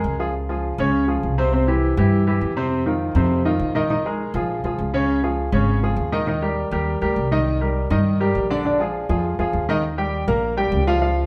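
Sunny and danceable, this short salsa cut moves at a brisk, straight-feel clip in four. A clear concert grand piano carries the accompaniment throughout, sitting up front with an open sound and deep bass in its lower register. Beneath it, a pizzicato upright bass on gut strings gives a woody, dark and thumpy foundation, playing slightly below the piano in level. The harmony travels through colourful changes such as Dbmaj7, Bb7sus4 and Cm7 before a Bb7 resolves onto Eb at 9.8 seconds, where a brief new section begins. Both instruments play from start to finish, bathed in a wet reverb that suggests a large studio room.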